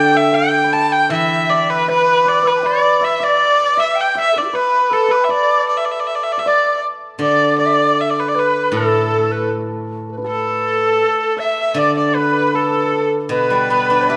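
Chinese traditional chamber music in the D zhi mode, this pastoral, festive excerpt moves in a rubato 2/4 at 79 BPM as a clear, biting erhu carries the melody up front with light vibrato and portamento, while a bright, reedy large dizi with a buzzing membrane and a shimmering hammered dulcimer play second lines, and a silvery steel-string zither plucked with fingerpicks accompanies until 3.4 seconds and returns at 7.2 seconds, all set in a moderate recital hall reverb.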